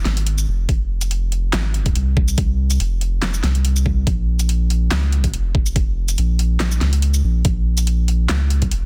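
Deep dubstep at 142 BPM in F minor, this brooding, cavernous excerpt rides a half-time, lightly swung groove where a round, soft sub bass holds up front from F1 to Db2, an overdriven, knocking electronic kick enters at 0.7 seconds, and a layered drum kit of handclaps, shaker, a fat snare and metallic hats adds tape-hued texture, all in a dry, dense, heavily limited mix.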